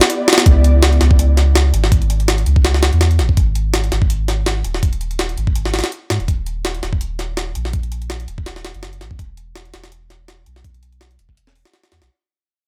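A compressed, sampler-style jungle drum kit opens this short drum and bass passage, cut from a longer piece, with a thumpy kick, a high-tuned snare and hi-hat, all pitched up and gritty, sitting up front in a small room ambience. At 0.5 seconds a soft dub sub bass enters, deep and round with a triangle and square wave character, a fast attack and sustained notes ranging from D#1 to G#2, colored by tube saturation. A filter sweep runs across the sub bass while a fade-out spans the passage from 0.5 seconds to its end at 12.1 seconds. The groove moves at a frenetic 165 BPM in 4/4 with a light swing on the sixteenths, set in C# dorian, and the mood is frenetic and atmospheric, with the bass sitting beneath the tape-warm breaks. The overall sound is dry and close, with both parts placed prominently in the mix.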